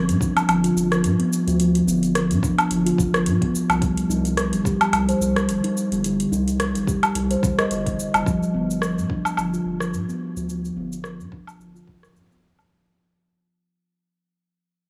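A ringing, pure steel tongue drum played with soft rubber mallets sits up front, spinning mellow arpeggios through a low-pass filter and tape echo, then takes a filter sweep as the music fades out from 8.3 s in this meditative, hypnotic organic downtempo fragment at 108 BPM with a gentle 16th-note swing. Beneath it, a round, nasal analog bass with a fast attack pumps against the sidechain, while a produced afro-pop kit with metallic hats, rim click, shaker and woodblock rides alongside a deep electronic kick. The harmony moves from G7 to Cm and back to G7, all set in a small room with light reverb.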